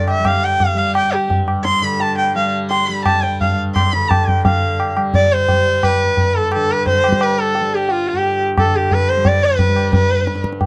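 The sound is dry and close, with the intimacy of a 1970s-style studio and little reverb, capturing a brief, meditative and devotional Hindustani classical passage cut from a longer piece. It is set in raga Khamaj on G at 174 BPM in a straight 4/4, tuned slightly low to A4 = 437 Hz, and the tempo speeds up across its roughly 10.7 seconds. A single bowed sarangi carries the melody up front, its bright, focused tone colored by light vibrato, gliding portamento and the ring of sympathetic strings as it moves between F4 and C6. Beneath it, a softly plucked tanpura sustains a buzzing, shimmering drone from G2 to G3, sitting well back in the balance. A low-tuned tabla with a short ring keeps the percussion acoustic, close and dry from 0.1 seconds, and the music shifts into a new section at 4.4 seconds before the sarangi stops at 10.4 seconds.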